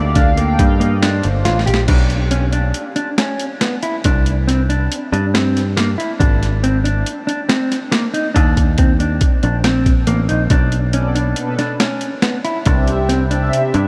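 Tense and brooding, this short progressive instrumental cut moves at 139 BPM in 5/4, with chords drifting from G minor through B minor, A-flat and E-flat. A dark, clean, fingered electric guitar plays arpeggios over bright, up-front picked bass and a gritty, tape-toned boom bap sampler-style kit with a thumpy kick, whose kick and snare drop out at 10.1 seconds. A swirling, warbling sawtooth pad with phaser and chorus colours the opening and returns at 10.9 seconds, all bathed in a dreamy, huge ambient reverb.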